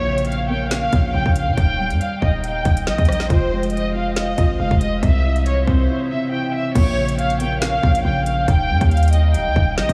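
Ominous and dark, this excerpt of half-time drill hip hop at 139 BPM moves through Bb minor, Eb, F minor and C chords. A lush, bowed violin section carries the melody with vibrato and portamento, softened by a low-pass filter and tape echo, over a mellow felt-muted upright piano with audible action noise and subtle chorus. Beneath them sit a punchy, heavy 808-style bass and a crisp drill kit with a hard-clipped kick and woody snare, which enters at 0.2 s and sits up front. A break arrives at 5.9 s, and everything is bathed in a dreamy, huge reverb with a faint mains hum.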